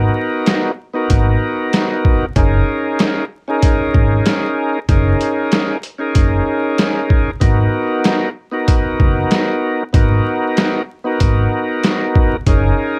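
Boom-bap hip-hop in G# minor at 95 BPM, this gritty, tough excerpt cut from a longer piece rolls in 4/4 with a light swing on the sixteenths. A bright, reedy tonewheel organ carries the accompaniment from the first second, lightly overdriven with audible key click and a slow rotary speaker, sitting up front with a cassette-tape haze and filtered edges. Beneath it, a woody, dark upright bass is plucked low around F#1 to G#1, while a compressed, pitched-down sampler-style drum kit enters at 0.5 seconds with a thumpy kick, a medium-tuned snare and hi-hat, muffled and tape-softened as if re-recorded in a small room. The harmony moves from a rootless G#m7 to F#6 at 2.4 seconds and back to G#m7 at 7.4 seconds. Vinyl crackle and light reverb give the whole loop a dusty, sampled feel.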